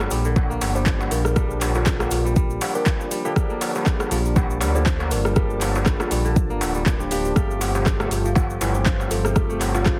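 Afro house at 120 BPM in G minor, driving and hypnotic, with a swung sixteenth-note feel, cut from a longer piece and shifting from Gm7 to Fadd9/G at 7.4 seconds. A smooth, dark synth bass with vibrato sits up front, pumping with the sidechain, alongside the deep electronic kick, which enters at 0.4 seconds. An overdriven deep house kit with metallic hats, handclaps and rim clicks carries the groove, joined by a crisp, distant metal-shell darbuka and a grainy, close cabasa. In the background, a ringing fingerpicked kora plays arpeggios and a barky tine electric piano adds stabs with digital delay, both pumping with the sidechain, while a very quiet, mellow analog pad with chorus holds sustained chords. A woody kalimba melody with digital delay comes in at 0.8 seconds, and the whole mix has a heavily compressed radio sound.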